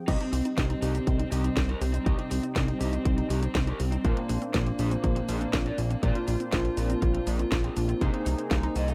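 A fat, thick analog bass sits up front in this short italo disco excerpt, its detuned sawtooth and square tones laced with ring modulation and a filter sweep. The mood is bittersweet and nostalgic at a straight 121 BPM in 4/4, in C minor, moving from Cm to Bbadd9 at 4.0 seconds and onto Abadd9/C at 8.0 seconds. An overdriven, lo-fi electric lead guitar through a small cranked amp carries the picked melody with tape echo. Around it, a retro, glossy chorused polysynth plays pulse-width-modulated stabs, a smooth analog pad holds very quiet sustained chords with a soft attack and long release, and a lush, wave-folded unison pluck adds faint arpeggios. A punchy electronic kick, which stops at 8.6 seconds, and a layered house kit with a cracking snare, hi-hat, cabasa and crash cymbal drive the groove, both re-recorded in a small room. The mix is dry and close, in the manner of a 1970s studio recording.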